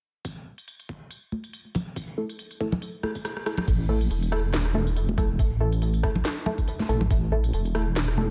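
A brooding, dark deep dubstep excerpt at 140 BPM with a half-time, swung feel opens at 0.2 seconds on an A5 chord, with a gritty, pitched-down electronic kick up front and a layered garage kit of cracking snare, crisp hats, rim clicks and crash cymbal. Hard-hand congas, close and dry with dub echo, join soon after, followed by muted, detuned sawtooth chord stabs with a filter sweep, chorus and echo. After a drum fill, a deep, compressed wobble bass enters at 3.7 seconds, dark and up front, in a mix with little reverb.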